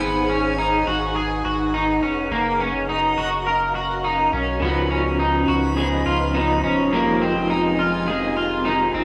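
A dry, gritty recording with transformer saturation, light reverb and a touch of studio ambience frames this hazy, ethereal dream pop passage at 104 BPM, moving through Abm7, Gbmaj7, Db9 and Fm7. An airy, detuned sawtooth pad with a noise layer holds slow-blooming chords through ensemble chorus, built-in reverb and phaser, while an up-front, twangy electric guitar at the edge of break-up picks bright arpeggios through lush chorus and analog delay, over a deep, full sub bass doubled at the octave. At 4.6 s a second slightly broken-up electric guitar through a small old amp joins with tremolo and chorus-soaked accompaniment.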